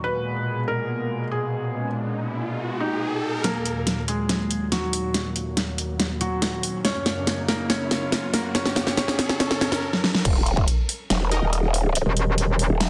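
A growling, formant-filtered bass arrives at the drop at 10.3 seconds with overdrive and chorus, joined briefly by a metallic FM wobble bass and a punchy electronic kick, after a felt-muted upright piano carries a soft, intimate melody with delay over a lush, detuned unison pad that pumps under sidechain. This heavy, menacing wobble dubstep cut sits at 141 BPM in a half-time feel in Eb minor, with an electronic riser rising from 1.4 seconds and a tape-warm dubstep kit of huge snare, metallic hats and crash entering at 3.4 seconds to drive a build-up with drum fills and a filter sweep. A fleeting supersaw stab with delay flickers in the background during the drop, all within a moderate hall reverb and a dense, heavily limited master.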